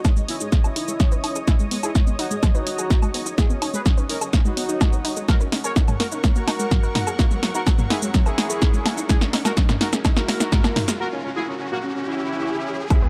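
A dramatic, hypnotic stretch of melodic techno at 126 BPM in a straight 4/4, built as one long build-up whose drum fill runs to 11.0 s before a short break and an impact at 12.9 s, over chords moving from C#madd9 to F#. An up-front, tape-warm layered kick and a dry, punchy analog drum machine with hi-hat, shaker, snare, toms and woodblock drive it, while a bold, fat analog synth brass carries the melody with chorus, vibrato and digital delay, and a lush, thick unison pad adds bright sustained chords with phaser and 12-bit sampler grit. Underneath, a warbling, lo-fi dusty pluck plays background arpeggios under a filter sweep, a round analog bass sits barely audible, a very quiet riser and impact enters at 2.4 s, and sidechain pumping breathes through the melodic parts and percussion in a light reverb.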